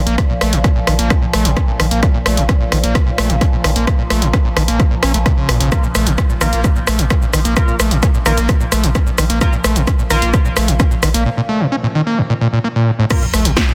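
The excerpt opens on a deep, saturated sub bass and an evolving, resonant drone in the background, joined at once by a squelchy, screaming distorted acid line up front, a punchy, tape-warm analog drum machine with crash, hi-hat, rim click, shaker and soft-clipped snare, and a louder electronic kick, all driving industrial peak-time techno at 130 BPM in straight 4/4 on a Bb5 chord, with an edgy, nasal sync-sweep polysynth adding stabs from 5.7 to 10.3 seconds before a very quiet sub drop marks the impact at 13.1 seconds in a dense, heavily limited mix with light reverb.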